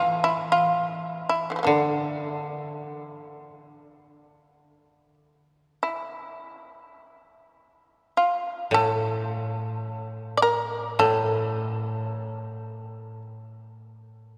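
A bright, buzzing shamisen carries the melody in this meditative, austere passage of Japanese traditional chamber music, its plectrum-plucked, fretless tone sitting up front with a percussive edge. Beneath it, a koto played with fingerpicks supplies low accompaniment, its woody, dry voice also placed close to the listener. The pace is slow, around 47 to 55 BPM in 4/4, but the rubato feel lets the time breathe freely, and the instruments are tuned to A4 = 443 Hz. The pair sounds in a church or concert hall with a long cathedral reverb that lingers for seconds, and the music moves into a new section at 6.4 seconds. The shamisen falls silent at 13.2 seconds, leaving the koto to sound alone until it stops at 14.3 seconds, as this fragment of a longer piece comes to an end.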